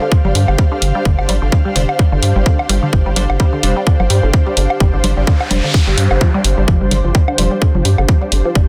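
Dense and heavily limited, this short cut from a longer minimal techno piece sits in a digital ambience with a hypnotic, cool mood and a light swing in its sixteenths. A tight, up-front electronic kick anchors the groove, joined by bright electronic hi-hats and dry congas and woodblock that trail off into dub echo. Beneath them, a rubbery square bass bounces with a hollow, dark, wave-folded tone and a moving notch, pumping against the kick. A juicy, squelchy blip pluck repeats a riff through phaser, cassette tape colour and dub echo, while an ethereal pad drifts above with ensemble chorus, tremolo and its own reverb. A crisp wavetable chord stab hovers in the background from 1.3 seconds, and an electronic noise sweep passes through between 5.2 and 6.7 seconds.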